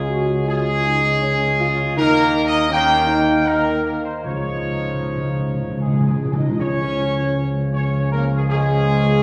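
A dark, distant trumpet section carries the melody up front in this triumphant, majestic ceremonial fanfare, a short classical passage in Db major at 79 BPM in 3/4, cut from a longer piece. Beneath it, warm French horns and clear trombones with light vibrato hold sustained chords while a mellow tuba anchors the bass, all set in the reverberant wash of a recital hall. Timpani struck with hard mallets enter close and dry at 4.2 seconds for a crisp fill, joining the brass as the harmony moves through Dbadd9 before settling back on Db.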